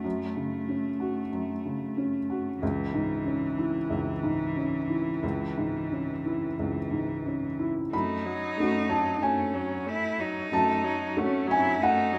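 Light reverb surrounds an intimate, up-front felt-muted upright piano, whose boxy tone and audible action noise give this neoclassical fragment, cut from a longer piece, a close and private feel. The mood is melancholic and longing, moving at around 93 BPM in 4/4 with a rubato feel, and the harmony shifts from F#m to C#m before returning to F#m at 7.9 seconds. The piano carries the accompaniment from the start, its short sustain and thin felt spreading across a broad register. Alongside it, a single bowed cello sings a second line in an intense voice with vibrato and a smooth top, playing throughout. At 7.9 seconds a single bowed viola joins with a rich, even tone and vibrato, adding accompaniment in a narrow middle range until the fragment ends at 12.2 seconds.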